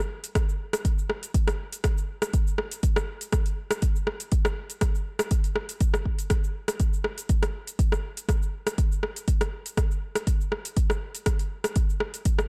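A deep, up-front electronic kick drives this earthy, spiritual house cut, entering at 0.4 seconds alongside a layered, overdriven deep house kit of cabasa, metallic hi-hats and rim clicks with a light 16th-note swing, both parts set in small room ambience within a dark digital production.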